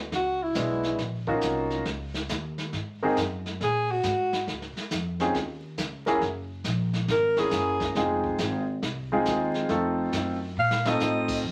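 A cool, swinging small-group jazz cut, taken from a longer piece, moves in a relaxed 4/4 with a firm swing feel on the eighth notes. A woody, dark pizzicato upright bass anchors the low end from the start, while a vintage brush kit with dark cymbals, a medium-tuned snare and a punchy kick adds a soft, rolled-off pulse from brushes, hi-hat and crash. The alto saxophone takes the solo, clear and close-miked with vibrato and a soft attack, sitting up front in short phrases that return at 3.6, 7.1 and 10.6 seconds. A present grand piano with long sustain shares the front of the mix, comping through rich extended chords that move from E9 through Ebm9 and Dbadd9 on to Fm7 and F7. A brief drum fill arrives at 10.6 seconds near the end of the passage, and the whole sound is framed by a short, wet studio reverb and a layer of vinyl crackle that gives it an aged, intimate character.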